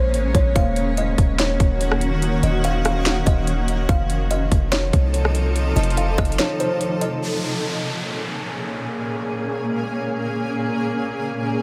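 A half-time trap groove at 144 BPM in 4/4 anchors this ethereal, spacious cloud-rap hip hop excerpt in Bb minor. An electronic kit of hard-clipped kick, sharp snare, rim click and metallic hi-hats sits up front beside a deep, boomy 808-style bass with a fast attack and a noise layer; the bass and kick both drop out at 6.4 s, and the rest of the drums follow shortly after. Over Bbm7, Ebm7 and F7 chords, a bright granular pad of detuned sine and sawtooth voices blurs and evolves with slow attack, built-in reverb and sidechain pumping, while a woody, hollow kalimba plucks a short, airy melody through digital delay until 7.2 s, when an electronic downlifter enters beneath the sustained pad.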